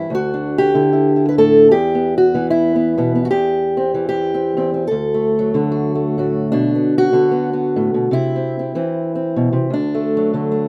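This folk piece is a short cut from a longer solo fingerstyle performance, nostalgic yet hopeful, moving at an unhurried pace with a gentle swing in a steady four. A fingerpicked old ladder-braced acoustic guitar sits up front, its aged strings giving a dark, woody, boxy tone as it moves from Dsus2 through E5, C/E, D, Bm7 and C before settling back on D near 9.7 seconds. A moderate studio reverb surrounds the guitar in a rough home-demo mix.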